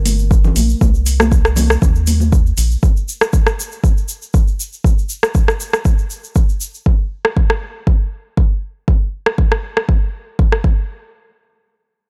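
Round analog bass opens the cut, a deep, wave-folded tone with tube saturation and sidechain pumping that sits up front until 2.8 seconds, while an afro-pop drum kit with metallic hats and rim clicks, high-tuned congas struck with hard hands, and a grainy egg shaker enter together. This earthy afro house piece swings lightly in 4/4, anchored by a layered electronic kick drum that lands from 0.3 seconds with a tape-softened thump. The congas drop out early and the shaker stops at 6.8 seconds, leaving kick and kit to carry the dry, gritty small-room sound until about 10.7 seconds.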